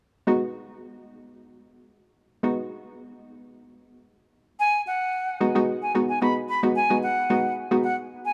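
A straight 4/4 pulse at 111 BPM drives this short dance-pop excerpt in G# minor, confident yet bittersweet, as a hollow, bouncy square-wave pluck with chorus sits up front on a G#m7 chord from 0.3 seconds. At 4.6 seconds a close-miked concert flute enters with the melody, airy and reedy with a crisp attack and vibrato, its phrases trailing a dub echo. Light reverb and a small room ambience frame both parts.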